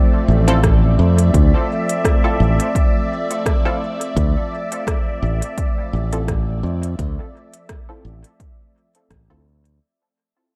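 A lightly swung sixteenth-note groove in 4/4 is carried by a punchy, overdriven electronic kick drum sitting up front, while an organic-sounding electronic kit adds crisp hi-hats and rim clicks with a tape-soaked, small-room character and trails of dub echo. This hazy, meditative piece of ambient dub rests on a single chord throughout, cut from a longer piece. A bright, direct fingered electric bass holds the low end prominently, and a smooth, vintage analog pad of detuned sawtooth tones sustains chords alongside it with a soft attack, long release, chorus and a warbling moving notch. Muted, deep chord stabs with a fast filter pluck and decaying tails sit further back, colored by analog chorus and dub echo. Light reverb surrounds the mix, and a fade-out begins at 2.3 seconds and runs to 9.8 seconds.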